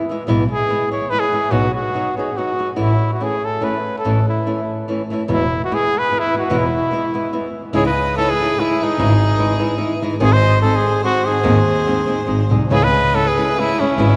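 Mexican folk in the mariachi tradition, this festive, proud excerpt moves in a lilting triple metre with a swung, rubato feel. A trumpet carries the melody up front in a classical style, its tone warm, while a fingerpicked acoustic flamenco guitar sits up front alongside it with accompaniment. Beneath them, a dark concert grand piano holds the bass line with a mellow, vintage character, deep low end and short sustain, its action noise audible in the intimate sound. At 7.8 seconds the harmony shifts toward a minor colour, and a single bowed violin enters with a second line, clear, slightly nasal and earthy, with light vibrato and an airy bow. The whole performance rings in the long, wet reverb of a cathedral-like church or concert hall, lending the modest ensemble a grand, spacious setting.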